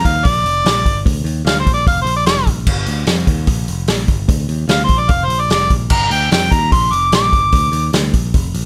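Smoky and brooding, this short blues rock and southern rock power-trio passage at 148 BPM in G minor puts a warm, overdriven harmonica solo up front, its light vibrato, scooped notes and smooth top carrying a jazz-style melody through slapback echo, over growly picked electric bass and a natural vintage acoustic drum kit of punchy kick, medium-tuned snare, hi-hat and crash, heard in a dry studio room.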